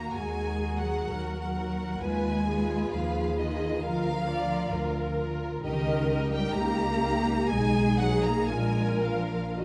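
A dark, warm scoring-stage ambience with a moderate 2.0-second reverb surrounds this elegiac, melancholic slow romantic movement for string orchestra in Eb minor at 66 BPM, played with rubato, as a clear, intense violin section sings the melody with vibrato over a second violin section's expressive, close line, a lush, smooth viola section supplies the accompaniment, and a soft-attacked cello section with portamento joins a focused, up-front double bass section on the bass, the five bowed sections sounding together throughout this 9.6-second excerpt from a longer piece.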